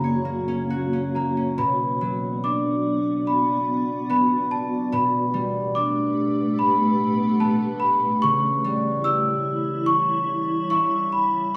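A dreamy, gentle children's lullaby in B minor opens on an F# chord, with a large celesta, a concert harp and a granular cloud pad all sounding together from the first moment. The celesta carries the melody high up and close to the ear, its bell-like, sweet tone struck by hard felt hammers yet dark and smooth as it rings. Beneath it, the fingerpicked acoustic harp supplies a ringing accompaniment across a broad register, while the pad holds sustained chords that feel cloudy, blurred and full-bodied, with detuned sine voices in unison, a moving notch, slow attacks, long releases and its own built-in reverb. The pulse sits around 72 BPM in 4/4 but flows rubato, and the harmony moves to B minor at 1.6 seconds, then Gadd9/B at 4.9 seconds and C#dim at 8.2 seconds. A moderate recital hall reverb surrounds the ensemble, and this short passage is cut from a longer piece.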